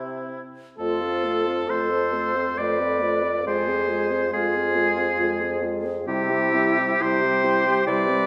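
In a rubato 3/4 at 61-72 BPM, this tender fragment of a slow romantic wind-quintet movement sets an airy, expressive flute melody with vibrato against an up-front oboe second line with a smooth top, while a mellow, soft-attacked French horn and a clarinet sitting in the background fill the accompaniment over a bassoon bass with light vibrato, the harmony moving from C through F and F minor back to C in the wet reverb of a recital hall.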